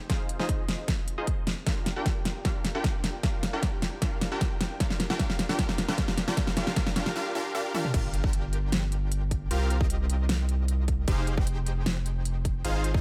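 Dreamy and emotional, this future bass excerpt moves at 153 BPM in a half-time feel in F dorian, with a detuned supersaw stab riff, pumping under sidechain and dulled by a low-pass filter and tape echo, sweeping through a build-up over a deep, saturated sine sub bass while a pop drum kit rolls a long fill of snare, toms, crisp hats and crash. At 7.9 seconds the drop lands, the overdriven electronic kick punching up front beside the fat snare as the chords cycle through Gm7 and C7sus4 to close on Fm9, all set in a light reverb.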